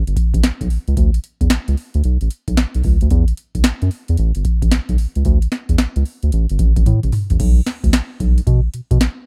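This R&B and new jack swing cut, taken from a longer piece, moves at 112 BPM in 4/4 with a 64% swing on the 16th notes that gives it a punchy, confident strut. A round analog bass sits up front, its wave-folded blend of square, sine and triangle tones producing a dark, sustained low end with a fast attack, ranging from G1 to B2. Beside it, an up-front analog drum machine supplies a deep kick, crisp snare, metallic hi-hats, toms and crash cymbal, with a booming character from being re-recorded in a large room. A drum fill from 6.9 to 7.4 seconds leads into a new section that carries through to the close. The overall sound is dry and close, in the manner of a 1970s studio recording, tuned slightly sharp to A4 = 441 Hz.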